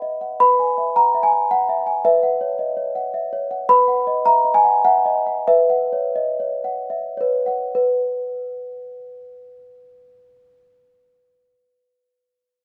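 A solo celesta, bell-like and mellow with a slightly dark edge, sits up front in light reverb and plays an innocent, dreamy classical lullaby excerpt in B major and 3/4, tuned to A4 = 444 Hz, ranging from B4 to B5 over gentle harmonies on a B bass, with a tempo between 68 and 111 BPM that slows from 2.9 to 7.7 seconds before a new section opens on a B5 chord at 7.7 seconds and continues to 12.6 seconds.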